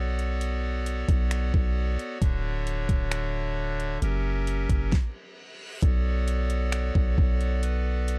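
Atmospheric cloud-rap hip hop in a melancholic, hazy half-time feel, where a hollow clarinet-stop pipe organ with chiff holds sidechain-pumped chords over a deep, mellow sine 808 bass and an up-front R&B kit of knocking kick, fat snare, metallic hats and finger snaps, all pausing at 4.9 seconds as an electronic reverse cymbal rises into the return of the opening Bm9 chord at 5.8 seconds, in a dark digital ambience.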